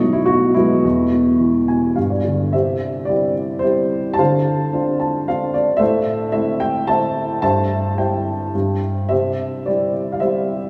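In a rubato 3/4 at 110 BPM, this short cut from a longer classical piece in C major gives a hopeful, lyrical solo to a dark, woody upright piano, heard up front with audible action noise and an intimate character, ranging from E2 to A5 with brief fills at 1.4 and 4.7 seconds, all bathed in a long cathedral reverb as the harmony moves through Dm7 and Am to a closing C.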